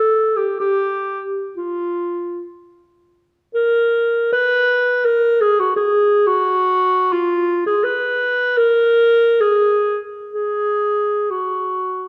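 Yearning and lonely, this fragment of a classical piece for solo clarinet drifts in a free, rubato 3/4, its dark, roomy tone sitting up front between F4 and Cb5 inside a recital hall's lush reverb, with a new section beginning at 3.5 seconds.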